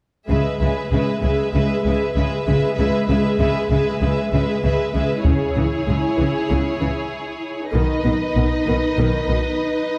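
A dark, warm scoring-stage sound frames this epic, dark orchestral film-score excerpt in C# minor at 97 BPM, where a distant, lush violin section, a close viola section with expressive portamento, a focused cello section in the background and a soft-attacked double bass section hold C#m7 before the music builds from 5.3 seconds through C#m to B, punctuated by a hard-stick taiko ensemble from 5.2 to 6.5 seconds.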